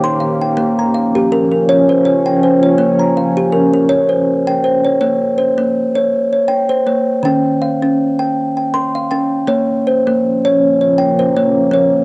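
A woody, ringing kalimba and a deep, detuned pad open this hypnotic, meditative world piece together, the kalimba spinning bright arpeggios in a gently swung triple time while the pad holds dark sustained chords colored by chorus and tremolo. The pad drops away at 5.0 seconds, leaving the kalimba alone in its plate reverb, then returns from 10.0 seconds to the end of this fragment cut from a longer piece. Both parts carry a cassette tape character, set in a small room with a homemade sound.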